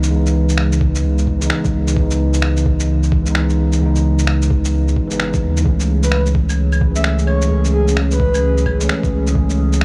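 Future garage at 130 BPM in C# minor, this short cut from a longer piece has a nocturnal, ghostly mood, with a 62% swing on the sixteenths giving the groove its shuffle. A bell-like tine electric piano carries the accompaniment under a filter sweep, pumping against the sidechain and trailed by analog delay, while a warbling, nostalgic pad in the background holds sustained chords through chorus, phaser and its own reverb. A deep, round sine sub bass sits up front and pumps as well, and a muffled, pitched-down electronic shaker, finger snaps and claves tick away with a tape-softened, sampler-style character. The thumpy electronic kick drum enters at 0.8 s, and at 6.0 s a breathy, flute-like synth lead appears, colored by chorus, tremolo, vibrato and analog delay. The harmony moves from C#m7 to F#m7/C# at 5.7 s, all captured in a dry, gritty recording with a small room ambience.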